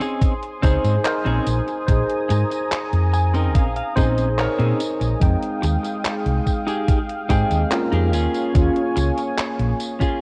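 A worn, warbling cassette sound hangs over this woozy, melancholic vaporwave fragment, with pitch drifting, faint mains hum underneath and a light reverb around it all, cut from a longer piece. At 72 BPM in a straight 4/4 and Bb dorian, a slightly out-of-tune tine electric piano played through a combo amp sits up front with lush chorus and tape echo, while a thick, detuned sawtooth unison pad holds sustained chords with a slow attack and long release. A dark, clean, picked electric guitar carries a compressed riff softened by a low-pass filter and tape echo, adding a fill between 2.7 and 5.2 seconds. A detuned 8-bit drum machine's handclaps, hi-hat and tambourine run from the start in a small room ambience, and a thumpy, sampler-style electronic kick enters at 0.2 seconds up front. A round, amped hollow-body short-scale bass, fingered and dark, comes in at 0.6 seconds beneath the harmony as it moves from Bbm11 to Fm9 and then Eb9sus4.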